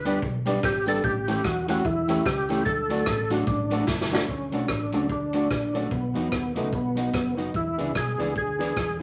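Ska at 148 BPM in D major with a swung feel, cheerful and upbeat, cut from a longer piece and coloured by vinyl crackle and a wet studio ambience. An overdriven, gritty tonewheel organ carries the melody up front with chorus vibrato and a slow rotary speaker, over a mellow, clean fingered electric guitar, a round fingered electric bass, and dark, woody upright piano stabs sitting in the background. A vintage drum kit with a punchy kick, medium-tuned snare, rim clicks and hi-hat drives the groove, a very quiet jingly tambourine plays until 4.2 seconds, and a drum fill at 3.9 seconds leads into a second section where the chords move from D to B and E7.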